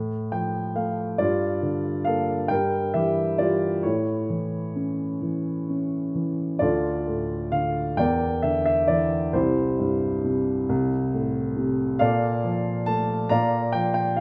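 A moderate scoring-stage reverb surrounds a dark, mellow baby grand piano that sits up front with a smooth, vintage tone and long sustain, in this brief excerpt of lyrical solo classical piano. Its opening fill over the first 1.2 seconds leads into a reflective, rubato passage in 6/8 that spans from low bass to the upper register. The same phrase is heard twice, the second time from 6.6 seconds moving through Dm, Em7b5, C and Bbmaj7 before resting on Gm7/Bb.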